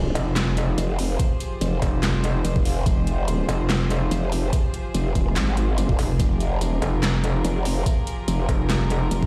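Heavy and menacing, this half-time wobble dubstep excerpt at 144 BPM in F minor opens on a very quiet sub drop impact over an Fmadd9 chord, as a distant, earthy chamber string section sustains bowed chords with light vibrato and sidechain pumping beneath a growling, formant-filtered bass and a metallic FM wobble bass, both saturated with chorus and overdrive, while a dubstep kit of handclaps, metallic hi-hats and a huge snare plays from 0.2 seconds and an overdriven, knocking electronic kick punches in up front at 1.2 seconds, all played through a big sound system in a bare room.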